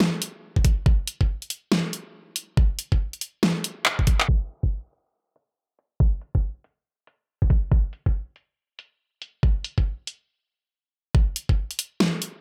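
Dark and heavy, this dubstep excerpt sits in a half-time feel with a swung groove, carried by an overdriven dubstep drum kit of handclaps, bright filtered hats and a huge snare, joined at 0.6 seconds by a knocking electronic kick that sits up front. A drum fill at 3.9 seconds leads into a long filter sweep across the drums, which runs through a stop at 10.3 seconds until the drop lands at 11.1 seconds. The sound is dry and close, with a small-room character giving the layered, produced hits a gritty punch.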